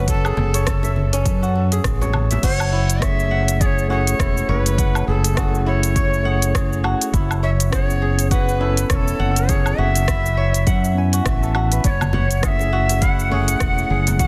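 A breathy, reedy Native American-style cedar flute carries the melody from the start, its chiff and vibrato set back at a distance and trailed by digital delay. This meditative, mystical organic downtempo piece, heard as an excerpt of a longer work, moves in a 4/4 groove with a light sixteenth-note swing. Fingerpicked kora arpeggios ring crisply alongside the flute, while a round, dark fretless electric bass sits up front with a sidechain pump. A punchy electronic kick and a deep house kit with smooth hats, rim click, shaker and woodblock enter almost at once, the snare softly clipped, and ringing congas and bongos struck with hard hands sit in the background, first until 2.4 seconds and again from 12.0 seconds. A clean tine electric piano joins at 3.0 seconds with delay and its own sidechain pumping, all within light reverb and digital ambience under a dense, heavily limited modern master.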